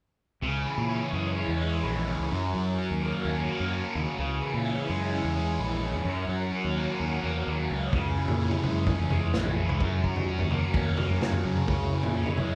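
A straight 4/4 pulse at 128 BPM drives this hypnotic, trippy psychedelic rock excerpt in C# dorian, where a bright, double-tracked fuzz guitar riff with phaser sits up front over a growling, overdriven fingered bass and shimmering, warbling string-machine violins with ensemble chorus, all cycling between C#m and F# in a live room with a 1.3-second reverb until a muffled, punchy vintage drum kit of kick, snare and toms enters at 7.9 s.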